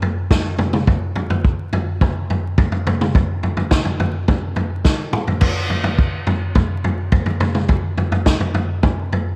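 A vintage acoustic drum kit sits up front in this trippy, hypnotic rock excerpt at 106 BPM in a straight 4/4, its tight kick, medium-tuned snare, toms and dark crash cymbal carrying a rolled-off top in a natural studio room, with a fill at 4.9 seconds, light reverb and a layer of vinyl crackle.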